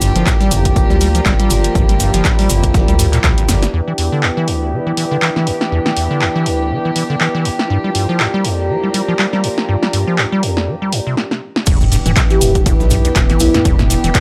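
A dry, gritty hardware sound with transformer saturation frames this trippy acid house excerpt in E minor at 121 BPM, swung on the 16ths, moving between Gm7 and Em7. A squelchy, resonant square-wave acid bass riff with overdrive and tape echo runs throughout beside a punchy analog drum machine of snare, handclaps, hi-hat, toms and crash, while distant bowed chamber strings hold sustained chords, swept by a filter through the middle section, and an airy, breathy pad floats above, both pumping with the sidechain. The punchy electronic kick, a deep, round analog bass with tube saturation, a very quiet, compressed sampler-style kit with tambourine, and a grainy background cabasa drop out after about 3.7 seconds and return for the drop at 11.7 seconds, where a metallic, ringing vibraphone with 12-bit grit and analog delay adds a short melody at 12.3 seconds.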